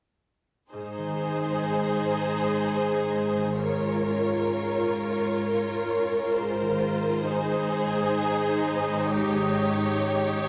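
Tender and warm, this slow romantic orchestral movement in three-four sways with uneven, rubato beats, a short passage cut from a longer piece. From 0.7 s the violins carry a lush, expressive melody with soft-attacked vibrato over a second violin line, while the violas give a smooth, even accompaniment, a bright concert harp rings out fingerpicked arpeggios, and a rich, distant cello section plays the bass. A wet concert-hall reverb surrounds the ensemble.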